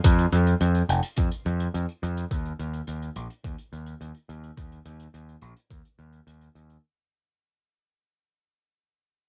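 Moody and nostalgic, this brief synthwave fragment at 106 BPM in a straight 4/4 fades out from start to finish, led by an up-front, bright, growling picked electric bass between F1 and F2 that is overdriven with tube saturation, sidechain pumping and a low-pass filter, over a thumpy, tape-warm, sampler-style electronic kick with large-room character that stops at 5.8 seconds and a faint acoustic hi-hat played with bundle sticks in a small room, all captured dry on a home cassette recording.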